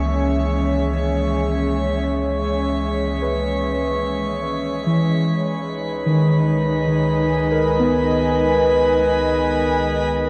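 An airy, breathy pad sits up front in this serene, spacious ambient passage in free time, holding sustained C# minor chords in C# dorian with a slow attack, long release and a soft chorus shimmer. Alongside it, muted, felt-like synth keys play intimate, dark arpeggios whose quick, decaying notes are carried by chorus and delay. A drifting glass-harmonics texture floats high above, its glassy overtones calm and sustained in their own reverb and chorus. A round, deep analog bass holds a low C# under everything, its tone shaped by a filter sweep. Over the 10.3 seconds of this cut from a longer piece, the pad, keys and texture fade in as the bass fades out, all bathed in a cathedral-like reverb and the warbling pitch drift of worn cassette tape.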